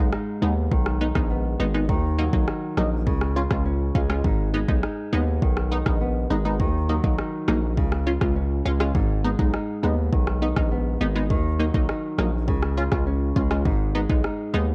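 A punchy, wave-folded chord stab with chorus and sidechain pumping opens this sultry, tough dancehall excerpt at 102 BPM alongside a dark, thumb-plucked flamenco guitar playing arpeggios, both carrying a cassette-tape tint, over a heavy, saturated 808-style bass and an electronic afro-pop kit with a deep kick and rim click, cycling through Abm, Ebm and Db in a small-room home recording.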